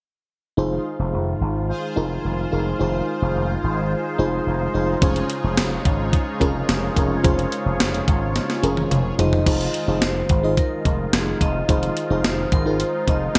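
Bright, digital 1980s-style pop with a nostalgic, urgent mood, cut from a longer piece, where a growly slap bass with an envelope filter sits up front beneath a dark FM electric piano with tremolo and a nasal, chorused analog pad from 0.6 seconds, fat detuned synth brass stabs join at 1.7 seconds, a thumpy 12-bit drum machine with gated reverb arrives at 5.0 seconds, and during a drum fill a metallic, airy vibraphone melody with digital delay rings out at 9.2 seconds.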